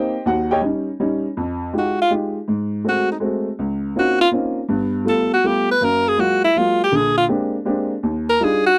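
An upright piano opens this sophisticated, swinging jazz excerpt, its woody, boxy tone sitting up front as it lays down the accompaniment from the first second. The tune moves at 162 BPM in a lilting 3/4 with a swung eighth-note feel. At 1.8 seconds an edgy, close-miked alto saxophone enters as the solo melody voice, placed up front and bending into its notes with jazz-style scoops in a compact middle register. Underneath, the harmony drifts through rich extended chords such as Fm9, Ab7b9, Dbmaj13 and Gbmaj9 before settling on Ebmaj9 near the close. The sound is dry and intimate, like a 1970s studio session touched with light reverb, and the passage ends at 8.8 seconds as a fragment cut from a longer piece.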